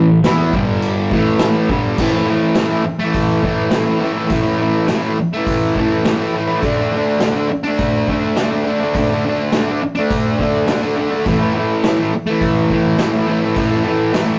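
This rough rehearsal-room recording has a moderate studio ambience and a tube saturation, and it plays as a fragment cut from a longer garage rock piece. The mood is swaggering and rowdy, with a straight four-beat feel. A double-tracked fuzz guitar sits up front, picking a compressed, distorted riff that moves from A5 to G5 and back. It then pushes on to D5 at 6.6 seconds before settling on A5 again at 11.3 seconds. A vintage acoustic drum kit enters at 0.2 seconds, mixed behind the guitar, with a punchy kick, a medium-tuned snare, hi-hat and crash. Its dark cymbals and rolled-off top give the kit a natural, warm character, and the arrangement opens into its main stretch at 2.0 seconds.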